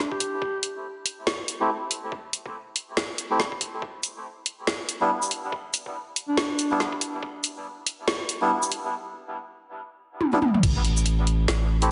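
A swung, half-time groove drives this brooding, meditative slice of deep dubstep, cut from a longer piece. A gritty, thumpy electronic kick, pitched down and re-recorded in a large room, sits beneath an up-front deep house kit of woody snare, dark hats, shaker, toms and crash cymbal. A mellow, punchy duduk opens with a brief folk-style phrase full of vibrato and dub echo, then returns for another short phrase at 6.3 seconds. From 1.6 seconds a reedy, nasal melodica plays filtered stabs over a change from Am7 to Em7. The build-up ends in a drum fill at 10.2 seconds, and at 10.6 seconds the drop lands on a thick, saturated triangle sub bass on A1 with a fast attack. The mix sits in a wet echo-chamber ambience with a heavily compressed, radio-like sound.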